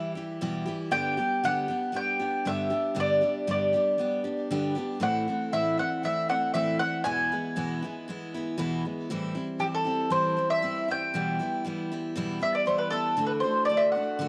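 Haunting and reflective, this short acoustic folk piece for a duo or small band moves at a steady, straight 118 BPM in 4/4 and sits in A dorian. A woody, double-stringed mandolin carries the melody up front, coloured by cassette tape character and tape echo, while a bright, full-bodied dreadnought steel-string guitar picks the accompaniment beneath it, also close and present. The opening passage moves through Em, G, Am and E, and at 9.1 seconds the music turns to a new section where the mandolin takes a solo over Am7, Em and D. Light studio reverb surrounds the pair, and the home cassette recording lends the sound an intimate, homespun quality. It is cut from a longer piece, ending at 14.3 seconds.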